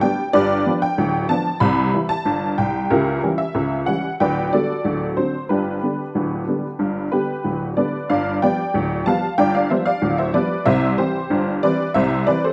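Playful and jaunty, this ragtime piano excerpt in G major moves at 93 BPM in a straight 2/4, cut from a longer piece. A detuned, jangly honky-tonk upright piano plays solo, sitting up front and ranging from deep bass to bright upper notes as its harmony steps from G7 to C and a C#dim before settling on G, then opens a new section at 8.1 seconds on G7. Light reverb and studio ambience surround a rough home-demo sound.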